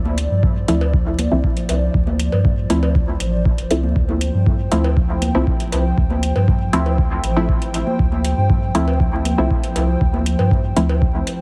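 Meditative and nocturnal, this dub techno excerpt at 119 BPM in D minor rests on a single Dm7 chord. A dark, wave-folded analog pad holds sustained chords, and muted, detuned chord stabs with phaser, cassette tape coloring and dub echo sit above a round, soft sub bass. A deep analog kick drives the groove with metallic electronic hi-hats, while overdriven congas and cowbell with echo lurk in the background. Sidechain pumping breathes through the pad, stabs, bass and percussion, and the whole track carries a heavily compressed radio sound, vinyl crackle and light reverb.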